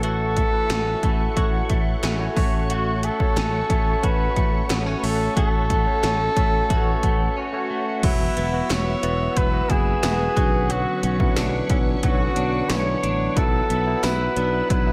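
A straight 4/4 beat at 90 BPM comes from up-front 80s electronic pad drums with a punchy kick, gated snare and metallic hats under gated reverb, joined by very quiet, crisp group handclaps from 0.7 s in this glossy, nostalgic 1980s-style pop piece in A major. A growly fretless electric bass and a barky tine electric piano carry the harmony from A6 to Esus2 at 8.0 s after a short break, while a mellow organ-string with ensemble chorus and a bright, picked clean electric guitar riff with chorus and delay sit in the background. Over them a warm, distant flugelhorn with scooped notes and delay sings the melody, and the mix sits in light digital ambience, cut from a longer piece.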